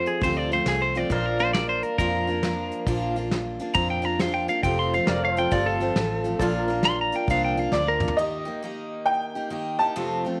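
Honky-tonk and classic country in an easygoing, heartfelt swing, where a twangy, up-front clean electric guitar takes the solo over picked jumbo acoustic guitar with audible finger squeak, a round, foam-muted vintage bass, a soft brush kit with a fat snare and a drum fill at 7.7 seconds, and fingerpicked pedal steel chords from 1.1 seconds, before a brilliant, woody upright piano solo takes over at 8.2 seconds in this short cut set in a moderate echo-chamber reverb.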